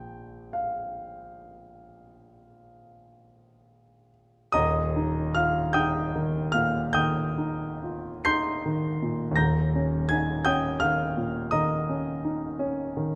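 A concert grand piano carries this serene, tender romantic nocturne alone, its tone warm with a deep bass and a short sustain, placed up front in the sound. The playing moves in a slow, flexible 12/8 with rubato, sitting at 43 to 57 beats per minute counted in dotted quarters, in Eb major. The harmony opens on Bb, settles onto Eb at 4.6 seconds as a second section begins, and colours into Eb7 at 9.4 seconds. The keyboard range stretches from Eb1 in the depths up to C7 at the top. A moderate concert hall reverb surrounds the instrument, and the overall production leans dark, suiting this brief passage drawn from a longer piece.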